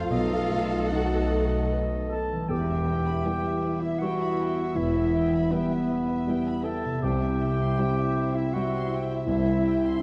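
A dark, distant clarinet carries a second line through this bittersweet, sorrowful passage of cinematic orchestral film score in a rubato three-four, joined by a pure, straight-toned flute and a roomy oboe that drops out at 2.1 s. A felt-muted upright piano with audible action noise supplies accompaniment and a ringing, thumb-plucked harp plays arpeggios, while two lush bowed violin sections sit in the background, one holding the melody and the other a second line. A very quiet viola section, a vintage French horn section sustaining chords, a very quiet cello section and a distant double bass section round out the orchestra in a wet scoring-stage reverb.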